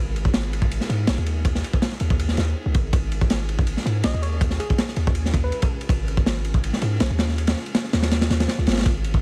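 Nostalgic and atmospheric, this short cut from a longer drum and bass and jungle track moves at 162 BPM in 4/4 with a light swing on the sixteenths, resting on a G#m6 chord in G# dorian. A very quiet, ethereal pad holds sustained chords from the start, its detuned, warbling tone softened by a slow attack and a long release. Beneath it, a deep, sine-like 808-style bass sustains long notes, mellow and decaying after each fast attack. From 0.2 seconds a crunchy breakbeat kit sits up front, with a punchy kick, a medium-tuned snare and dark ride cymbals, saturated and gritty, with a rolled-off top. Between 4.0 and 5.7 seconds a soft, round FM lead with a keys-like strike appears in the background, colored by chorus, phaser, vibrato, cassette tape character and dub echo. The whole mix carries small room ambience, heavy echo and vinyl crackle.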